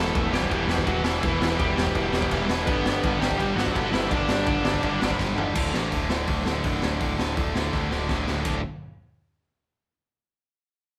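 A raw garage drum kit sits up front in this energetic, upbeat punk rock excerpt, its boomy kick, high-tuned snare, crash, hi-hat and toms sounding gritty and saturated with a rolled-off top, at 166 BPM in a straight 4/4. Behind it, a bluesy overdriven lead guitar with a dark, distorted tone carries the melody from the start until 5.2 seconds, when the first drum fill arrives. Two bright, picked rhythm guitars, one overdriven and one tight and distorted, sit in the background playing riffs in a low register. A growling picked electric bass adds punchy, overdriven low end beneath them. The chords move from Em to G before settling on a D5 at 5.6 seconds, with another drum fill leading into the final stretch, and the whole band sounds as though it is playing live in one room with light reverb.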